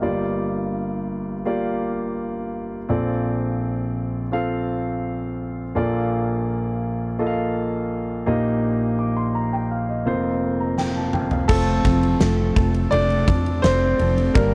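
Piano-driven pop with a hopeful mood, this dry excerpt opens on a polished, long-sustaining grand piano playing alone over chords that move from Gm7 to Bbmaj7, until a huge arena drum kit with a fat snare, punchy kick and bright cymbals enters with a fill at 10.8 s; at 11.5 s the harmony settles on F and the piano takes a solo, while a dark, foam-muted electric bass joins along with a full-bodied, fingerpicked steel-string acoustic guitar in the background.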